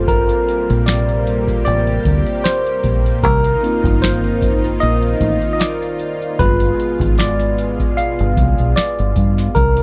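A dry, close 1970s-style studio sound frames this late-night, soulful neo-soul and R&B excerpt, where a barky, phased tine electric piano takes the lead over a lush, chorused unison pad, a deep, round fingered dub bass and a booming analog drum machine of finger snaps, metallic hi-hat, kick and crisp snare, all moving through Gm11, Cm7 and G7b9 with a gentle sixteenth-note swing.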